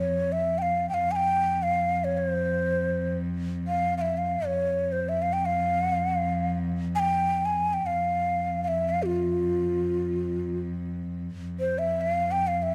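Unmeasured and floating in free time, this short fragment of an Arabic maqam ensemble piece unfolds with a hypnotic, longing mood. A breathy, hollow ney carries the melody from start to finish across its 12.7 seconds, ranging from F4 up to Ab5, its end-blown reed-cane tone shaded with vibrato and tongued articulation. Beneath it, a single bowed cello holds a steady drone on F2, played sul tasto with a soft attack and light vibrato for an intimate, warm bed. Both instruments sit up front, captured by close, detailed microphones that reveal every breath and bow stroke, while a light reverb adds a touch of air around them. The ney stays slightly more prominent than the cello, keeping the yearning line in focus over the sustained low tone.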